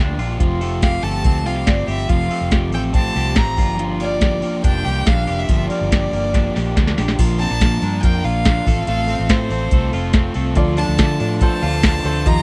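A dry, close recording in a 1970s studio style, with little reverb, carries this breezy, youthful slice of jangly indie pop, cut from a longer piece and moving in a straight 4/4 at 142 BPM. A clear, smooth violin sings the melody with even vibrato and a slapback echo, while a bright, twangy twelve-string electric guitar spins compressed arpeggios touched with subtle chorus and its own slapback. Underneath, a crunchy overdriven guitar adds picked accompaniment, and a dark, round, foam-muted fingered bass anchors the low end. A soft vintage rhythm box sits up front from 0.2 seconds, with a deep kick, crisp snare, metallic hats and crash cymbal, and its fill from 6.3 seconds leads into a new section at 7.2 seconds. The harmony moves from Fadd9 and Gm7 to Bb, F/A and finally Dm, where a woody upright piano joins at 10.6 seconds.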